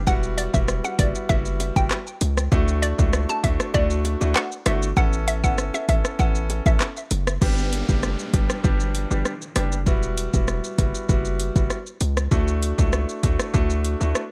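A punchy, heavy 808-style bass drives this bouncy, sunny dancehall excerpt at 98 BPM in D major, set against an up-front electronic drum kit with a deep kick, metallic hi-hats, handclaps, rim clicks, shaker and crash, while a clear, polished grand piano carries the Emadd9, Dadd9, Aadd9 and G chords throughout, a hollow, detuned square-wave pluck with chorus and tape echo plays the melody until 6.8 seconds alongside very quiet, tight, high-tuned bongos that drop out at 7.3 seconds, and an electronic downlifter sits in the background of the second section from 7.4 seconds, all within a digital ambience.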